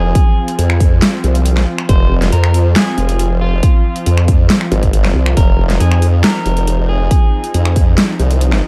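A dark, digitally ambient mix opens this short cut of heavy wobble dubstep, which moves with a half-time feel and a menacing mood. Up front, a formant-sweep wobble bass built from sawtooth and sine tones carries the low end with chorus and overdrive, and a second, detuned and saturated wobble bass joins it from 1.9 to 5.8 seconds. An electronic kick drum punches hard while a big-room dance kit adds finger snaps, metallic hi-hats and a huge snare, both with the boxy tinge of a small room. Above them, huge, lush supersaw chords hold sustained harmonies, pumping under sidechain and darkened by a low-pass filter. Sitting quietly in the background, an electric guitar at the edge of break-up picks a melody coated in vintage 12-bit sampler grit and delay.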